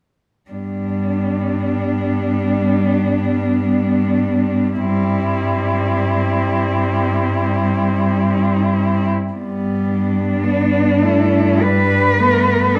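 At 0.5 s four bowed cellos begin together in a tender, lyrical classical passage in G major and free time, cut from a longer piece: a warm melody cello sings up front with expressive vibrato and portamento, a second cello with similar sliding expressiveness carries an inner line beneath it, a rich, smooth and even accompanying cello sits further back, and a focused, close bass cello stays on a low G, the ensemble wrapped in the lingering reverb of a recital hall.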